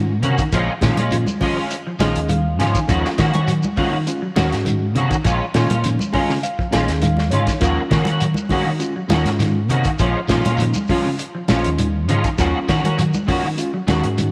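Up front, an electric guitar on the edge of break-up cuts through with picked, slightly gritty stabs thickened by an ensemble chorus. This intense, hypnotic afrobeat excerpt circles a two-chord vamp between Ebm7 and Bbm7. A reedy electric piano with fast tremolo plays mellow accompaniment through its own built-in speakers, stepping forward with fills around 1.7 and 5.8 seconds, while a clean, picked electric guitar keeps up quiet arpeggios in the background. Underneath, a fingered electric bass sounds round, dark and punchy. A dry, smooth soul drum kit with a tight kick, medium-tuned snare, hi-hat and a rolled-off top drives the groove, joined in the background by thick-skinned, compressed and saturated congas played with hard hands and a grainy, close shekere. A moderate echo chamber reverb lends the mix a roomy glow.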